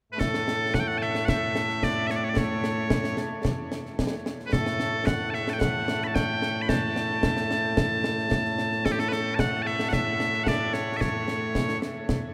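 A straight 4/4 pulse at 111 BPM drives this stirring, proud piece of traditional Scottish pipe music in A mixolydian, tuned slightly sharp to A4 = 444 Hz and cut from a longer performance. Loud, bright, piercing bagpipes carry the continuous solo melody up front from 0.1 seconds, spanning A2 to B5, while acoustic concert snare and bass drum hold the beat just as close. The tune comes around a second time at 8.9 seconds, and a huge, wet reverb places the whole performance in a vast, echoing space.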